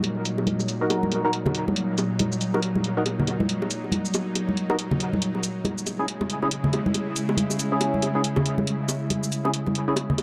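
Meditative and cavernous, this short cut from a longer deep dubstep piece moves at 139 BPM in a swung, half-time 4/4 feel, set in Eb phrygian and shifting from Ebm to Dbm at 5.2 seconds. A bowed-like drone holds sustained chords throughout, its string-like, nasal tone tense and evolving, with vibrato, a slow attack and a long release, sitting up front in its own built-in reverb. Electronic hi-hats and shaker are layered and produced, re-recorded in a small room and filtered to a muted softness, while bongos and congas sound bright, close and dry apart from their dub echo. From 0.8 seconds a percussive organ stab enters, hollow and decaying with a fast attack, its dark tone thickened by chorus and trailed by dub echo. A moderate spring reverb and a dark, warm production give the whole a deep, shadowy space.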